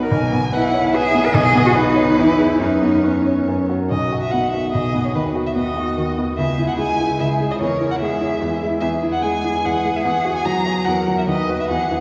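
Cheerful and graceful, this quick classical-period movement for piano trio moves in 3/4 at 146 BPM, its rubato feel letting the phrases breathe in B major. The violin carries the melody from the first moment, its warm, expressive tone marked by vibrato, a soft attack, portamento and a smooth top, sitting up front in the mix. Beneath it the cello sings a rich, focused second line with vibrato of its own, while the baby grand piano supplies a clear, open accompaniment with long sustain, also placed up front. All three instruments play throughout the 12 seconds, shifting from an opening section into a new one at 3.9 seconds, where the harmony travels through B/D#, C#m, E and F#7/E before settling on B/D#. A generous concert hall reverb, with a 2.3-second decay, places the listener further back in the room, and the passage is cut from a longer piece.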